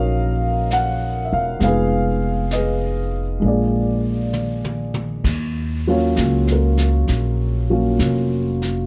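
The recording is dry and close, with a dark, warm production that keeps the room small and intimate. This wistful, melancholic jazz ballad moves at a slow 66 BPM in 4/4 with a gentle swing, centred in Eb minor on a progression that runs from Ebm9 through Fm7b5 and Bb7 before returning home. A grand piano with long sustain and a natural tone sits up front, supplying the accompaniment in its middle register alongside a woody, thumpy pizzicato upright bass strung with gut. A vintage kit played with brushes enters at 0.7 seconds, set back and roomy with a rolled-off top, dark cymbals and a punchy kick. It sits noticeably lower in the mix than piano and bass, and a drum fill at 4.3 seconds leads the short passage back to the opening Ebm9 chord.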